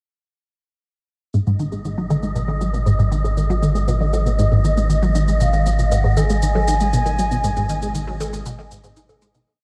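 A short, complete piece of ambient space music at 118 BPM in 4/4, with an expansive, cosmic mood in G# dorian. At 1.3 seconds a juicy, squelchy blip pluck sets up a repeating 12-step sequence that drifts against the bar, phased and lightly chorused with cassette tape grit and tape echo, while a filter sweep moves across it. Alongside it, a round sine sub bass holds a sustained G# root up front, and a light machine pulse of shaker and low bongo fades in with its own tape echo, sounding as if it were re-recorded in a large room. Moments later, an airy, breathy wind-like noise layer settles onto a held high D#5. At 5.4 seconds a smooth, expressive sawtooth lead enters, gliding with portamento and vibrato through a free melody between E#5 and G#5, colored by analog chorus and tape echo. The whole dreamy mix is soaked in a huge ambient reverb, and the piece fades out from 6.8 seconds.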